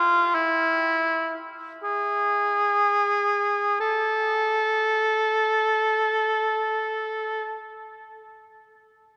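A dark, warm production sets a lone cor anglais inside a wet cathedral reverb with a long 5.3-second decay, giving the room a vast, echoing presence. This is an expressive classical piece for the unaccompanied instrument, its mood mournful and lonely, tuned to A4 = 437 Hz. The cor anglais sits up front with a clear tone and a light vibrato, playing in a classical style within a narrow span from E4 to A4. Over the first 3.8 seconds the line slows, lending the phrase a lingering, hesitant quality before the music moves into a second section. The instrument sounds from the very start until 7.7 seconds in this fragment cut from a longer work.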